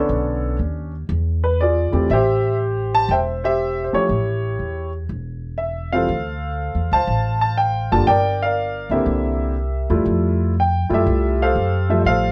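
Light reverb gives this short jazz piano trio cut a sophisticated, swinging sound. At 120 BPM in 4/4 with a firm swing on the eighths, a present grand piano with long sustain carries the melody up front, while a woody, thumpy pizzicato upright bass on steel strings sits close beside it, both playing from 0.0 to 12.3 seconds. The harmony moves through rich extended chords, from Bm9 and E7b9 to Am7, then Dm11, Gm7 and C9 before settling on Fmaj9 at 10.1 seconds.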